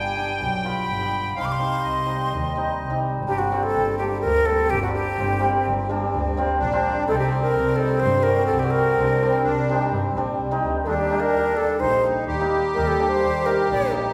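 This excerpt is heard in a reverberant recital hall, where a church or concert space gives a 1.5-second tail to a small klezmer ensemble. The mood is soulful yet festive, moving at 127 BPM in a straight 4/4. A breathy, mellow silver concert flute carries the melody up front, with vibrato and a crisp attack. Beneath it, a reedy accordion with light tremolo tuning plays a sweet, airy second line, while a hammered dulcimer sits forward with shimmering, ringing accompaniment. A rich, bowed double bass played by one player sounds close and intense, its biting tone edged with airy bow noise and vibrato. The opening in C harmonic minor moves from G to Cm, then shifts to G harmonic minor at 3.3 s, where the harmony passes through Gm, Cm and Eb before the flute drops out at 13.9 s.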